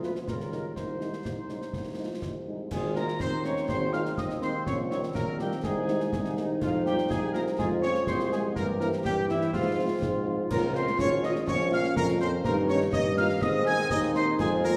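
A clear, vintage-toned tuba stands out most in this military-style wind band march, anchoring the bass from Ab1 to Ab2 with vibrato under a proud, rousing excerpt in Ab major at 123 BPM in a straight 2/4. The close-miked trumpet section carries the melody with a mellow, tight sound, light vibrato and soft attacks, while a distant woodwind section adds a second line in the background and a very quiet French horn section offers dark, roomy accompaniment. A present trombone section holds sustained chords underneath, and concert snare drum, concert bass drum and clash cymbals keep the march close and dry, with dark cymbals. At 2.7 seconds a pure, distant piccolo joins with crisp attacks high above, and a euphonium enters in the background with another second line. The harmony moves through chords such as Ab, Fm, Db and Bbm before settling on Ab at 13.4 seconds, all set in a wet recital hall reverb that suggests a church or concert hall.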